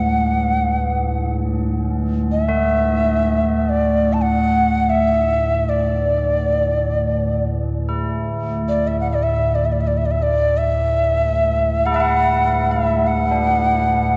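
This calm, spacious excerpt of meditative world music features an airy cedar flute carrying the melody up front, its mellow wooden tone colored by vibrato and a tongued chiff. Alongside it, also up front, sits an eerie, inharmonic low drone with a slow attack, long release, chorus and its own reverb, while soft tubular bells struck with a rawhide hammer add solemn, ringing accents. A lush hall reverb and dark production give the whole passage a deep, enveloping sense of space.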